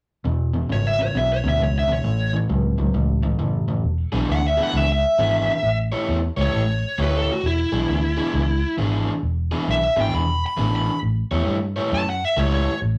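A swinging 4/4 electric blues shuffle at 134 BPM in E mixolydian rolls along with a rollicking, laid-back ease. An overdriven semi-hollow guitar plays the riff with a warm hollow-body tone, over a dark, round, foam-muted fingered bass, while a smooth overdriven lead guitar sings the melody from 0.7 s, with all three parts up front. Cut from a longer piece, the rough rehearsal-room recording carries tube saturation and moderate studio reverb as the chords move from E and A to E7 and A7.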